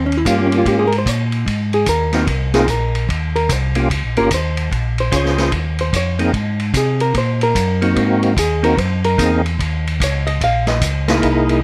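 A dark, clean hollow-body electric guitar opens this soulful, greasy soul jazz organ trio excerpt with a picked solo, over a mellow, round tonewheel organ bass line with audible key click and a stopped rotary speaker. A vintage acoustic kit joins at 0.1 seconds with a punchy kick, medium-tuned snare, hi-hat and dark ride cymbal, all gritty and saturated with a rolled-off top. At 0.3 seconds a fat, lightly overdriven percussive organ takes up the melody, its third-harmonic percussion and chorus vibrato turning through a slow rotary speaker, while light reverb and close, detailed miking keep the swung groove intimate.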